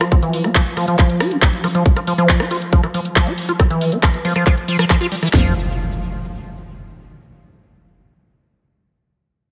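A squelchy, resonant acid bass riff sits up front, its filter sweeping through the opening 5.3 seconds with chorus, tape echo and gritty 12-bit sampler texture as it pumps with sidechain compression, in this intense, alien psychedelic trance excerpt. Tight kick and cracking snare drive a layered electronic kit with handclaps, hi-hat and rim click in a small room, while a bright, detuned pulsing texture holds sustained chords in the background. At 5.3 seconds the chords drop away as a fat analog bass note briefly sounds and an electronic impact rings out until 7.1 seconds, all within a dark, lightly reverberant mix.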